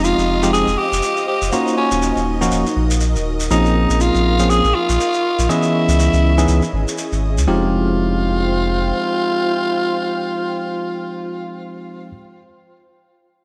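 A growling, raspy tenor saxophone carries the melody up front in this moody deep house fragment, its lines trailed by digital delay, while a bell-like tine electric piano adds clean stabs through the same effect over a swung sixteenth-note groove and minor ninth chords. A round analog bass sits dark and up front beneath until 8.9 seconds, and a grainy shekere and shimmering string-machine violins fall away at 7.5 seconds as the drop ends and a new section begins. An ethereal, airy pad with ensemble chorus hovers in the background throughout, framed by lush hall reverb and bright 1980s-style digital production.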